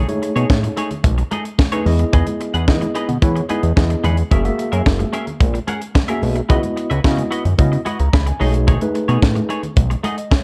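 A straight 4/4 groove at 110 BPM drives this slick, funky slice of early-eighties boogie funk, cut from a longer piece. The funk drum kit sits up front in a small acoustic room, with a high-tuned snare, a tight kick and hi-hat, while soft-handed, medium-tuned congas ring quietly in the background. A fat analog bass, thick with detuned sawtooth and square-wave tones, a filter sweep and a moving notch, holds the low end from F#1 to E3 with fast attack and sustained notes, sitting nearly as prominently as the drums. A worn, slightly out-of-tune tine electric piano plays mellow accompaniment through its built-in speakers, and a bright, compressed semi-hollow guitar picks a clean riff through analog chorus, lower in the mix. The harmony moves from B13 to Emaj7, F#9 and C#m11 before returning to B13 at 8.4 seconds, within a dark, warm, dry production.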